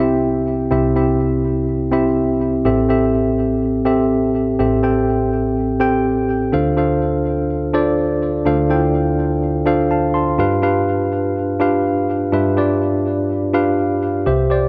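A lush hall reverb surrounds this dark, dramatic, nostalgic pop excerpt at 124 BPM in D dorian, where a solo tine electric piano, worn and slightly out of tune yet clean and up front with a touch of digital delay, moves through C, Am7, Dm7 and G7 across its 14.7 seconds.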